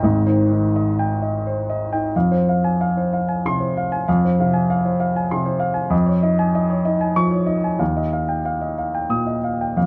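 Intimate and reflective, this short cut from a longer neoclassical minimalist piano piece in F minor drifts in a rubato 3/4 feel between 83 and 99 BPM, with a present, polished grand piano playing alone and up front across a span from Ab1 to Eb6, tuned to A4 = 445 Hz, as an opening Abmaj7 gives way at 2.1 seconds to Fm, then Dbadd9/F and Ebadd9, wrapped in light reverb and a dark, warm production.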